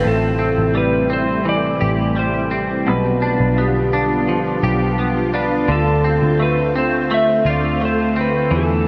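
A melancholic, hazy dream pop passage in A minor at 85 BPM opens with everything together: a clean, twangy electric guitar plays bright, compressed arpeggios up front through analog chorus and digital delay, while a silky, warbling string machine holds slow-attack chords under an ensemble chorus. Above them, a warm lap steel carries the melody with slide and volume swells through its own digital delay, and a dark, round, foam-muted picked bass anchors the low end. The whole fragment, cut from a longer piece, floats in a huge ambient reverb as the harmony moves from Am7 to G7/B at 2.9 seconds and Dm7 at 5.7 seconds.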